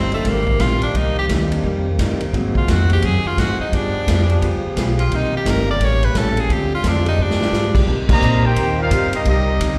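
Swinging and brassy, this brisk 173 BPM big band jazz passage in C minor opens with an edgy, forceful tenor saxophone solo carrying a slapback echo over a woody pizzicato upright bass, a dark hollow-body archtop guitar, an intimate concert grand piano, soft-attack sustained trombone chords and a distant, roomy drum kit with dark cymbals and a punchy kick, then after a drum fill at 7.2 seconds and a band accent at 8.0 seconds a mellow, smooth-topped trumpet section takes the melody with a bright trombone section on a second line, all heard through a live venue's PA.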